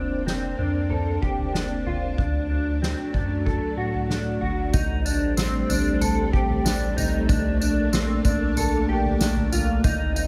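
A mellow electric guitar sits up front with clean, fingered arpeggios between C4 and A4, its dark tone shimmering through analog chorus and delay in this melancholic, ethereal dream pop excerpt at 94 BPM in a straight 4/4. Alongside it, a soft string machine holds silky, vintage sustained chords from F#3 to G5, its slow attack and long release softened further by ensemble chorus. A round analog bass anchors the low end from F1 to A2 with a deep, sine-like tone. A soft-mallet drum kit enters at 0.3 seconds, sounding distant and roomy, with a punchy kick and medium-tuned snare alongside tambourine and toms. The harmony moves from Bbadd9/F to D, then shifts at 4.7 seconds into a second section of Am7b5 and Bbmaj9, all set in a moderate concert hall reverb.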